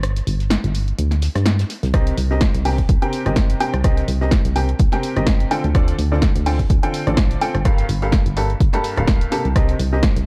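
A dark, small-room piano house cut at 126 BPM in C dorian, soulful and energetic, opens with a round FM bass pumping against a punchy, tape-tinged analog drum machine and a very quiet, dry 70s kit before the electronic kick and a clear, woody, slightly detuned upright piano riff with delay arrive at 1.9 seconds, riding a swung groove over chords from Cm7 through Dm7 and Gm9.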